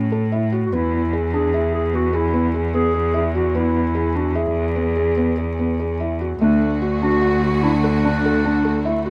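Restless and shimmering, this snippet of contemporary chamber music in 7/4 sets a dark, thick-felt upright piano's arpeggios over a smooth, up-front bowed cello bass, with a distant, roomy solo clarinet carrying the melody from 0.7 seconds and a biting, lush symphonic string section adding sustained chords from 6.4 seconds, framed by light reverb and a layer of vinyl crackle.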